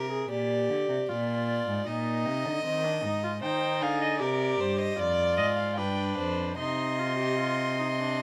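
A serious, contemplative fragment of a baroque-style fugue for string quartet at 76 BPM opens with a rich, close violin on the second line, a viola with light vibrato in the accompaniment, and a nasal, up-front cello on the bass, all bowed with gut-string, period-style tone. At 3.4 s the music settles into C minor as a dark, distant violin takes up the melody high above, and the harmony moves through a diminished chord and G7 before returning to C minor. A moderate large-studio reverb surrounds the quartet's reedy tone.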